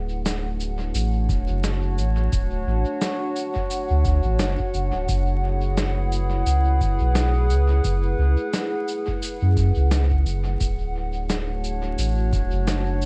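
Dry and dusted with vinyl crackle, this spacious, deep ambient dub excerpt floats a warbling, nostalgic tape-like pad of detuned chords with chorus and built-in reverb over a round, up-front sine sub bass, while a muffled, compressed electronic snare and cabasa sent through dub echo enter at 0.3 seconds and a deep analog kick joins at 1.3 seconds, the harmony moving from Dmaj7 to F#m11 and back over a swung pulse.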